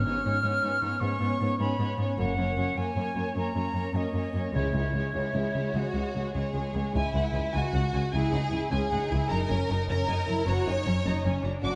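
Rolling in a steady 12/8, this swashbuckling, heroic film-score cue opens with a distant, lush violin section carrying the melody high above a second violin section, while an airy, up-front concert flute adds a second line until 6.4 seconds. Expressive violas with gentle portamento fill the middle, and a rich, forward cello section and a soft-attack double bass section anchor the bass with vibrato. Very quiet, articulate timpani strokes with hard mallets mark 0.0 and 4.6 seconds, all set in a reverberant scoring-stage space.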